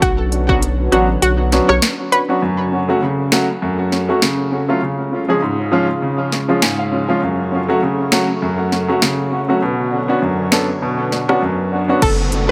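Bouncy and hypnotic, this dancehall excerpt in F# harmonic minor at 100 BPM rides a swung afro-pop drum kit with a deep kick, sharp snare and smooth hats, while a clear grand piano with audible action noise and tape echo carries the accompaniment from 0.3 seconds (adding a fill at 6.3 seconds) over a lush, detuned unison pad pumping in the background, as a thick saturated sub bass and a round, warbling analog pluck with chorus and tape echo appear only at the start and return at 12.0 seconds, just before a downlifter closes the echo-heavy, plate-reverbed mix.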